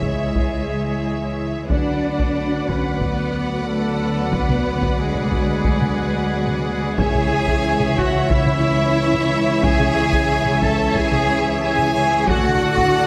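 A straight 4/4 pulse at 91 BPM is driven by a close, dry taiko ensemble struck with hard sticks, giving this dark, relentless cinematic film-score fragment in C# phrygian its epic push. Underneath, dark bowed cellos and a lush double bass section with a soft-attack bowed tone carry the bass, while bright trumpets cut through with tight, prominent stabs. Sustained chords come from mellow French horns, very quiet trombones and a very quiet, dark string section, moving from C#m to Bm/D, back to C#m at 7.0 seconds and onto D near the close. High above in the background, a rich, vibrato-laden violin section holds the melody, shadowed by a focused second violin line and an even viola accompaniment. A very quiet timpani hit with hard mallets lands between 7.0 and 7.9 seconds, and a generous scoring-stage reverb wraps the whole ensemble in a wet acoustic space.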